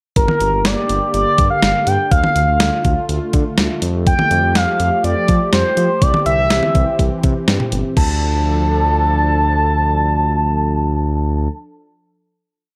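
A melancholic, cool synth-pop piece in D minor at 123 BPM opens at 0.2 seconds with a nasal, vibrato-laden sawtooth lead playing call-phrase motifs through chorus and slapback echo, over a detuned, sequenced synth bass and a thumpy, tape-tinged 12-bit drum machine with syncopated toms, joined by a warbling vintage pad with chorus, moving through Gm, Dm, Fadd9 and C under moderate plate reverb in a dark, warm production before the drums stop at 8.1 seconds and the rest hold a final Dm chord.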